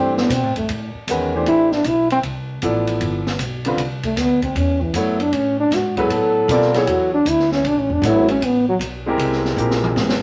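Modal jazz at 155 BPM in 4/4 with a swung eighth-note feel, this hypnotic, cool excerpt is cut from a longer piece. A mellow, close-miked trombone carries the solo up front, punchy and forceful in jazz style with light vibrato, ranging from E3 to A4 until it stops at 8.8 seconds. Beneath it, a warm concert grand piano with deep bass and a natural tone supplies the accompaniment, sitting up front as the harmony moves from D9sus4 to E9sus4 and then to C7b13. A woody, pizzicato upright bass with steel strings anchors the low end. The open jazz drum kit, entering at 0.2 seconds, has dark cymbals, a high-tuned snare and a boomy kick, and closes with a fill from 9.6 seconds. Moderate studio reverb surrounds the whole.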